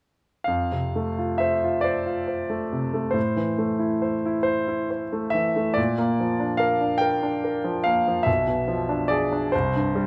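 Flowing in a rubato 12/8 at a slow 42-50 BPM, this romantic classical nocturne for solo piano drifts through a nostalgic, dreamy passage in F major, cut from a longer piece. The concert grand is clear and natural, sitting up front with a deep bass, and spans B1 to G5 as the harmony moves from F through A minor and B-flat to a B diminished seventh before settling on an open C. A moderate recital-hall reverb of 1.5 seconds lends the piano a gentle sense of space.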